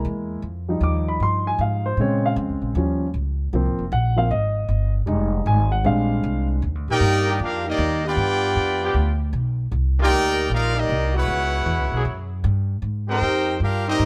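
Swinging eighths at 155 BPM in 4/4 drive this brassy jazz fragment in Eb major, where a polished, present grand piano solos over woody, pizzicato upright bass until 6.6 s, then at 6.9 s a brilliant trumpet section with light vibrato takes the melody up front while a dark, distant trombone section carries a second line and another trombone section holds sustained chords in the background from 7.3 s, set in light reverb.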